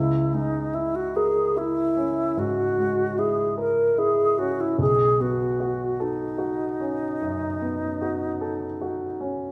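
An alto flute and a baby grand piano open together in this short impressionist classical fragment, cut from a longer piece, setting a mysterious, wistful mood in C# dorian. The tempo is a slow 50 BPM counted in dotted quarters in 12/8, played with a free, rubato feel. The alto flute carries the melody up front with a pure, bright tone, a soft attack, vibrato and lifted highs, staying within a narrow span from D#4 to A#4 before falling silent at 9.2 seconds. The piano accompanies with a clear, polished, present sound, also up front, ranging from deep B1 to A#4 and sounding slightly beneath the flute. The harmony moves from C#m6 to B9 at 4.8 seconds, and a wet recital hall reverb with a 1.4-second decay surrounds both instruments until the piano's last sound fades at 9.5 seconds.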